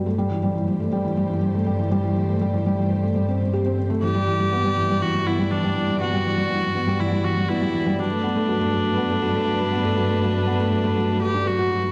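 Electronica at 121 BPM in 4/4 with a straight feel, this brief excerpt from a longer piece carries a hopeful, luminous mood. A felt-muted upright piano sits up front with a soft, intimate riff, its thick felt and audible action noise filtered dark through a low-pass filter and echoed by digital delay. Beneath it, a symphonic cello section holds a lush bowed bass on G2, warmed by tube saturation. In the background, a studio string section fades in with sustained, sul tasto chords moving from Am7/G to Em7/G to Bm7/G over a steady G bass. At 4.0 s a single clear viola enters up front with an earthy, boxy melody and an airy bow between D4 and G4. The whole is set in a recital-hall reverb of 1.4 s, giving the dark production a gentle glow.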